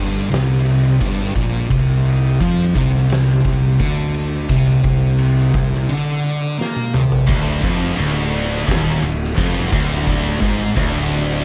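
Stoner and doom metal at 86 BPM in D minor, heavy and sludgy, with two thick fuzz guitars grinding out riffs in the background over a round, overdriven fingered bass and an oversized, low-tuned acoustic kit with a fat snare, punchy kick and dark cymbals in a pumping stone room. After a break with a drum fill, one fuzz guitar stops at 7.3 seconds as a bright, scooped, double-tracked high-gain guitar steps up front on a Dm riff. Light reverb sits over a warm production in this short cut from a longer piece.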